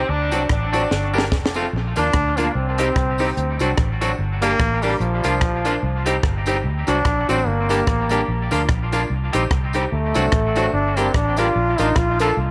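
A brilliant, close-miked trombone with vibrato takes the solo from 2.0 s in this joyful, bouncy, swung ska passage, after a tight vintage horn section opens with a brief line through tape echo, all over a round, foam-muted fingered electric bass, a bright, clean semi-hollow guitar with spring reverb, a dry cocktail drum kit with a high-tuned snare that plays a fill at 0.9 s, woody stabs from a worn, slightly detuned upright piano, and a jingly tambourine tucked into the background of a small room.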